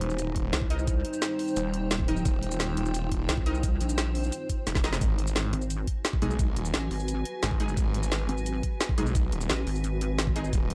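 Dark technical drum and bass with a futuristic, mechanical mood, this excerpt from a longer piece stays at full drop intensity, driven by an overdriven electronic kick with a knocking attack and a kit of woody snare, bright hats and shaker, broken by a short drum fill at 4.7 seconds. Up front, a snarling, detuned saw bass with a moving notch growls under distortion while a pulsing pluck wobble bass adds heavy, saturated weight with chorus. Punchy orchestra-hit-like synth stabs with delay cut through a cloudy, evolving granular pad and a deep, moody analog pad with lush chorus and sidechain pumping that sits in the background until 5.0 seconds.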